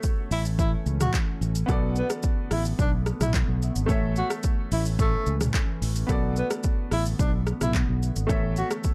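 This hypnotic, smooth afrobeats excerpt opens on an up-front deep house drum kit with an overdriven deep kick, metallic hats, handclaps, rim clicks, shaker and toms, together with clear, intimate grand piano chords with audible action noise and a glassy, ethereal FM pad in the background, moving between A and Bm7. At 0.3 seconds a punchy fingered electric bass enters up front, and a breathy tenor saxophone takes the melody in a whispered jazz style, with vibrato, scooped notes and a soft attack. The production is dark and dry, with little room reverb.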